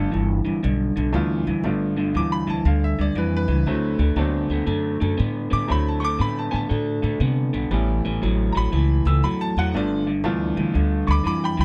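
Electric blues shuffle at 119 BPM with a swung, rollicking and soulful feel in D mixolydian, built on a twangy, slightly broken-up electric guitar riff through a small old amp and a woody pizzicato upright bass, both up front, while a clear but worn grand piano comps behind them over G9, D9 and A9 chords in light reverb, all three playing throughout this 11.6-second cut from a longer piece.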